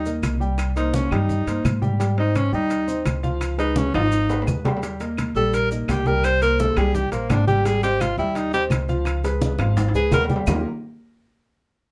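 Lively and sophisticated, this Afro-Cuban jazz excerpt at 170 BPM in Eb major features a breathy, up-front tenor saxophone solo with light vibrato and scooped notes over woody pizzicato upright bass and an intimate concert grand piano with audible action noise. Damped low congas, dry claves and grainy maracas sit in the background alongside very quiet, soft, round bongos and ringing metal-shell timbales. Drum fills arrive at 3.9 and 9.6 seconds, and everything is set in a dark, warm studio room.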